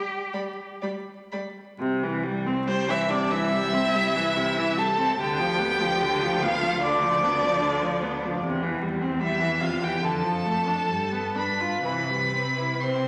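A rich, smoothly bowed violin sings the melody up front, even and full of vibrato, in this serene, lyrical slow romantic movement for string quartet in C major at 72 BPM, where the expressive cello opens alone at 0.0 s with soft attacks and gliding portamento before the dark, airy-bowed second violin and the warm, sliding viola join at 0.3 s, the gentle rubato unfolding in a reverberant recital hall over vinyl crackle and settling through G7 onto C at 11.9 s in this fragment of a longer piece.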